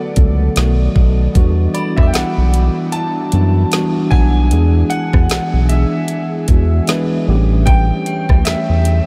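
A clear grand piano sings the melody from the start, lush with chorus and a diffuse ambient delay, over a mellow tine electric piano and a glassy, ethereal FM pad that sits darkly in the background, all moving through Bm7, Em9, E7 and A7 in E dorian. At 0.2 seconds a round analog bass with a deep, fast attack and an electronic R&B kit with a knocking kick, woody snare, metallic hats and rim clicks join up front, setting a slow 76 BPM groove with a swung sixteenth feel. From 1.7 seconds a faint, inharmonic synth chime rings with tremolo and delay, adding a sensual shimmer to this moody contemporary R&B excerpt.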